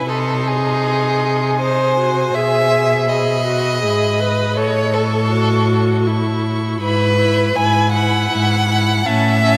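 Tender and serene, this slow, romantic string quartet passage moves in a flexible, rubato three-four, cut from a longer piece and bathed in the wet, lingering reverb of a vast, echoing cathedral. The first violin carries the high melody with a rich, smooth vibrato that sits distant in the background, while the second violin's focused, bowed line sounds up front beneath it. A clear, close viola fills in the accompaniment, and the cello anchors the bass with its own vibrato-laden bowing near the front of the sound.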